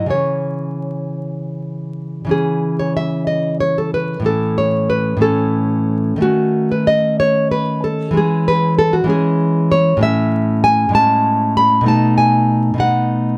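Nostalgic and warm, this brief excerpt of a romantic solo classical guitar piece unfolds in C# minor at a rubato 53-65 BPM in 6/8, its full-bodied, fingerpicked nylon-string guitar sitting up front in a small room with moderate reverb and a layer of vinyl crackle as the harmony drifts from C#m through A, D#m7b5 and Amaj7 to settle on B7 near 11.9 seconds.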